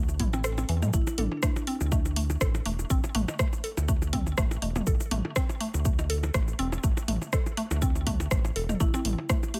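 Minimal techno in A minor at 122 BPM with a light 16th-note swing, this sparse, quirky cut from a longer piece rides a punchy, up-front electronic kick that briefly drops out from 0.4 to 0.9 seconds, a deep, round analog bass with sidechain pumping, a produced house kit of hi-hat, rim click and shaker, delayed electronic blips and toms, and a woody, nasal FM synth pluck riff with chorus, pumping and delay, while a warm marimba melody with medium mallets surfaces in the background with delay at 0.9 and 8.8 seconds, all set in a digital ambience.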